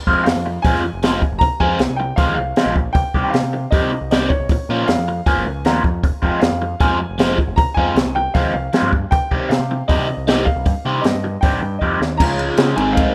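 A compact cocktail drum kit sits up front with a dark, smooth tone, a high-tuned snare and punchy kick, driving this cool, restless indie rock excerpt in F minor at 156 BPM, and a fill arrives at 11.8 seconds. A bright, crunchy overdriven guitar riff with phaser and a growling, round picked bass with overdrive run throughout, while a clear, woody upright piano plays a short-sustained melody through tape echo. At 12.2 seconds, a slightly broken-up electric guitar through a small old amp adds a compressed riff with subtle chorus in the background as the harmony moves to Dbadd9, all within a rough home demo mix with light reverb.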